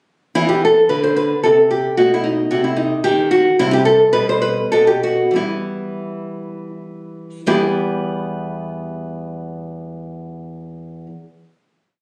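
In a rubato 3/4 with the tempo moving between 79 and 114 BPM, this short classical piece is a baroque-style dance in E minor, grave yet flowing in mood. A solo nylon-string guitar, fingerpicked and sounding small, acoustic and up front, carries a single-line melody over a walking bass, ranging from E2 up to C5 and playing from 0.4 to 11.1 seconds. The harmony moves from E5 through B7, C5 and Gadd11/B, passes a brief moment with unharmonised notes, and settles on E minor. The pace slows from 2.8 to 7.5 seconds, closing the main section before a final chord rings out to the end. A slapback echo sits on the guitar, and moderate studio reverb gives the phone-recorded, compressed sound a gentle sense of room.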